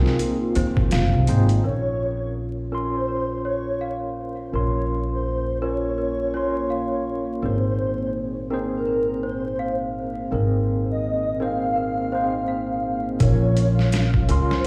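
A swung sixteenth-note groove in 4/4 opens this brooding, dark trip hop fragment, with a gritty, pitched-down boom bap kit of thumpy kick, medium-tuned snare and hi-hat playing only briefly before dropping out at 1.6 seconds and returning at 13.2 seconds. A woody, growly pizzicato upright bass sits up front throughout, beside a clean tine electric piano whose tremolo and tape echo come through a combo amp. Over them floats a pure, breathy sine lead carrying the melody, softened by vibrato, ensemble chorus, cassette tape and echo. Delicate, bell-like celesta arpeggios carry a lo-fi sampler grit and a low-pass filter, while a deep, detuned analog pad holds sustained chords in the background and takes a filter sweep through the long middle stretch. Near the close, a flickering grainy texture drifts in at 13.4 seconds, and the whole mix sounds as if played on a big system in a bare room, with large studio reverb and vinyl crackle.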